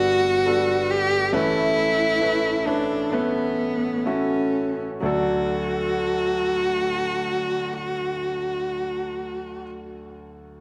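A close, expressive solo cello leads this hopeful, emotional pop ballad excerpt in D major at 62-70 BPM, its bowed melody full of vibrato and portamento over a clear, up-front concert grand piano with deep bass, long sustain and audible action noise, the pair slowing through Gadd9 and Aadd9 chords for the first 5.0 seconds before settling on D, all bathed in a wet recital-hall reverb, with the cello ending at 9.7 seconds and the piano ringing on alone until 10.6 seconds.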